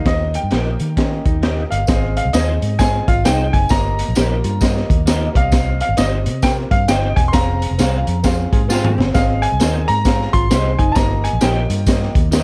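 Uptempo 1960s-style soul at 132 BPM with a swung, joyful and uplifting feel, this short cut puts a clear, worn grand piano melody over a woody, boxy upright piano accompaniment, a round, foam-muted electric bass and a punchy, gritty breakbeat kit with a high-tuned snare. A dark, hollow-body archtop guitar plays a clean riff in the background, while a twangy, slightly broken-up electric guitar with ensemble chorus adds stabs and a close, jingly tambourine joins at 1.9 seconds. The small-room production is dark and warm, and a tight horn section with vibrato briefly plays a second line at 8.2 seconds during a band accent and drum fill.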